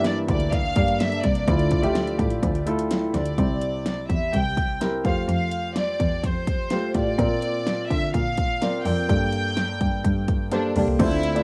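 Piano-driven pop with a driving, earnest mood, heard as a short cut from a longer piece and carrying the worn character of a home cassette recording with light reverb. A woody, present upright piano holds the accompaniment throughout, while a single bowed cello with vibrato supplies a nasal, boxy bass line. Above them a studio violin section carries the melody with a soft-attack, sul tasto ensemble sound that is pure and floating yet distant. A mellow French horn section adds a tight second line in the background, with light vibrato in a classical style, until it drops out at 3.1 seconds. The layered electronic pop drum kit is overdriven, with a punchy kick, a fat snare and metallic hats re-recorded in a small room, and a drum fill arrives at 10.5 seconds.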